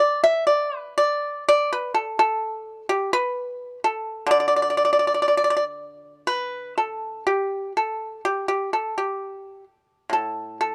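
Loosely metered in 2/4, the rhythm moves with a free, rubato give that lets each phrase breathe at its own pace. This brief passage, cut from a longer piece of Chinese traditional music, features a solo pipa from start to finish, its elegant, serene character unfolding across a range from A2 up to E5. Played with fingerpicks, the acoustic pipa has a bright, percussive attack and sits up front in the sound. The recording is dry and close, in a 1970s studio style with little reverb, so every plucked note arrives crisp and immediate. One section gives way to another at 6.3 seconds, and the passage ends at 10.7 seconds.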